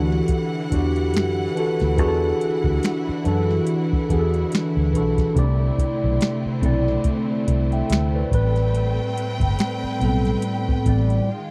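A slow 71 BPM groove in 4/4 with a 16th-note swing drives this introspective, soulful neo-soul R&B excerpt in E minor, where a soft vintage rhythm box with deep kick, crisp snare, metallic hats, finger snaps and overdrive sits under a round, foam-muted fingered electric bass, a mellow, up-front tine electric piano colored by phaser, and lush bowed strings holding sustained chords low in the mix, all moving from Em9 to C69 at 5.4 seconds and Am9 at 8.3 seconds before a break at 11.3 seconds, captured dry and close in a 1970s-style studio sound.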